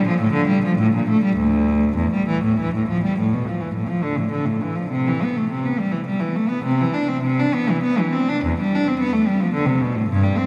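Set in a vast, echoing space, the recording is bathed in a long cathedral reverb that trails behind every note. A single bowed cello, close and up front, plays alone throughout in a grave, solemn baroque-style suite movement in triple time with a flexible, rubato feel. Its tone is rich, smooth and even, with vibrato carrying the line across its low-to-middle range in this short fragment of a longer piece.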